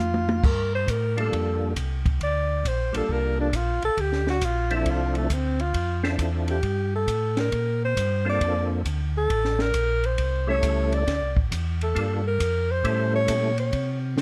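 A swung 4/4 groove at 135 BPM drives this soulful, bluesy soul jazz organ trio in D minor, where a breathy, close-miked alto saxophone solos up front over a round tonewheel organ bass line with key click and slow rotary speaker, a percussive tonewheel organ with chorus vibrato adding a melody from 1.2 to 13.5 seconds, and a compact cocktail drum kit with a high-tuned snare and tight kick opening on a short fill, all in light reverb, cut from a longer piece.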